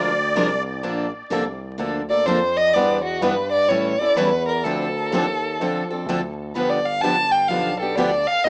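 A reedy, shimmering musette accordion note with tape echo opens this playful, charming snippet of acoustic string swing, over a bright, boxy swing-style guitar, a full-bodied steel-string guitar and a smooth, detuned synth bass, before an expressive bowed violin with vibrato, portamento and its own tape echo enters up front at 2.1 s, all within a rough home-demo sound of vinyl crackle, small-speaker tone and wet reverb.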